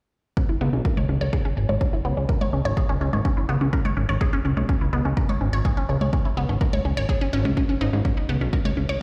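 A straight 4/4 pulse drives this dark, dramatic melodic techno cut from a longer piece: a punchy, overdriven electronic kick sits up front beside a fat, nasal, detuned sawtooth bass with sidechain pumping, dry overdriven congas join in the background at 1.0 s, and a lush, wave-folded unison pluck plays arpeggios through phaser, sidechain pumping and tape echo, the mix heard on a big sound system in a bare room with a large studio reverb.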